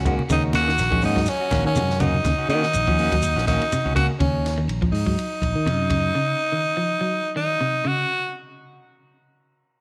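Afrobeat at 123 BPM in 4/4 with a light sixteenth-note swing, this brief, hypnotic and intense cut from a longer piece sits on a single Ebm7 chord in Eb dorian. A raspy, forceful tenor saxophone carries the melody up front with light vibrato and a gritty, edgy bite, running from 0.3 to 8.3 seconds. Beneath it, a growly, punchy fingered electric bass anchors the groove, while a dry, compact cocktail drum kit with a high-tuned snare, punchy kick and dark cymbals keeps time on hi-hat and ride. Congas with a thick, low-tuned skin and a grainy shekere sit in the background, the congas dropping out after 2.3 seconds. Two slightly broken-up electric guitars share the middle: one plays scooped, picked stabs through spring reverb in the opening seconds, the other twangy fingered arpeggios throughout. A barky tine electric piano adds clean accompaniment in the background for the first 2.0 seconds, and a light studio reverb frames the whole.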